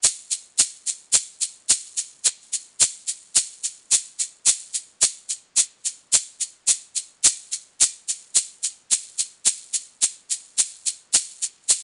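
A grainy, bright egg shaker sits close, dry and up front, carrying this romantic, sophisticated bossa nova fragment at 108 BPM in a straight 4/4, its sound set in light reverb on a worn, warbling cassette tape whose pitch drifts and whose top end rolls off above 10.7 kHz.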